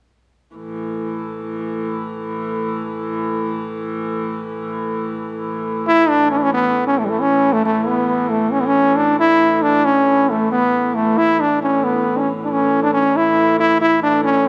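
Awash in the wet reverb of a recital hall, this rustic, festive medieval dance in a straight 6/8 at 90 BPM in A major opens at 0.6 seconds with a distant, nasal, reedy hurdy-gurdy drone before a brilliant, up-front solo trombone with light vibrato and a smooth top enters at 5.9 seconds to carry the melody through the end of this cut from a longer piece.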